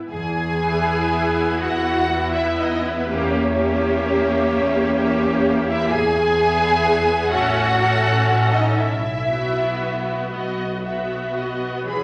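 Up front, a rich, even viola section carries the accompaniment in this lyrical, serene slow romantic movement for string orchestra, flowing in a rubato 6/8 at 37-44 BPM in E major, as a second violin line with vibrato and portamento sitting in the background, a cello section with a smooth top and expressive bowed double basses play from 0.1 s, while a lush, smooth melody violin section with vibrato enters at 0.6 s, the chords moving from E through Edim7 and A to Bsus4 and B in a wet scoring-stage reverb.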